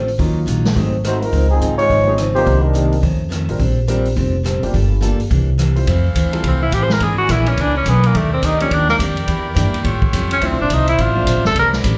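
A swung big-band groove opens this brassy jazz excerpt, driven by a drum kit with a punchy kick and medium-tuned snare, a woody pizzicato upright bass placed up front, a full-bodied picked steel-string acoustic guitar with slapback echo, and a warm, long-sustaining upright piano. A soft-attacked trombone section with light vibrato carries a second line from 1.1 s, and then, as the chords turn at 5.9 s, a tight, bright saxophone section sustains chords beneath a vintage-toned tenor saxophone solo that enters up front at 6.5 s, colored by slapback echo. The whole performance has the feel of a live club gig heard through the venue's PA, with light reverb and room ambience.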